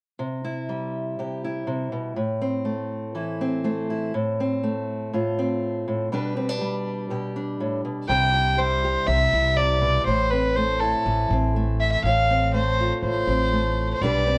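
Warm and anthemic, this folk fragment, cut from a longer piece, moves at a steady, straight pace in four. A fingerpicked steel-string acoustic guitar opens alone at 0.2 seconds, sitting up front with the warm tone of fresh strings and an audible finger squeak as it walks through C, Am, F/A and G/B. At 8.1 seconds a bowed fiddle takes up the melody, its reedy, gut-string voice placed close and forward, while a pizzicato upright bass joins underneath with a woody, thumpy low end. The three carry on together through C, Am and F/A until the fragment ends at 14.4 seconds. A moderate studio reverb gives the players some room, and the whole recording has the worn, warbling character of old cassette tape, with a warbly pitch drift wavering through it.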